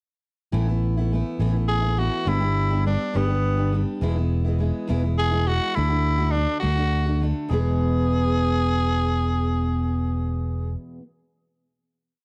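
Folk rock and heartland rock in a straight 6/8, this short, complete piece feels jangly and hopeful. A picked steel-string acoustic guitar strums steady eighths in open chord shapes, its bright tone carrying a touch of finger squeak, while a fingered electric bass plays a round, amped dotted figure beneath it, both starting at 0.5 seconds. At 1.7 seconds a raspy tenor saxophone takes the melody as a pop-style solo, building hook phrases from short motifs with vibrato and a gritty, punchy edge set in plate reverb. The harmony moves through a brief pre-chorus before arriving on a final E chord from 7.5 seconds to the close. The production is dark and warm with light reverb, and all three parts sit up front in the mix.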